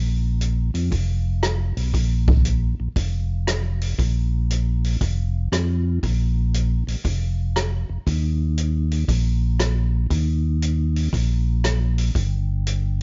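Swung eighths at 118 BPM in 4/4 drive this greasy soul jazz organ trio fragment, tuned slightly flat to A4 = 439 Hz. A full, lightly overdriven tonewheel organ with vibrato, audible key click and a stopped rotary speaker carries the bass line from F1 to F2 from the start, and an acoustic jazz kit joins at 0.4 seconds with hi-hat, rim click and a boomy kick. Both sit up front in a small, natural-sounding room with little reverb and a dark top end that stops at 7.5 kHz.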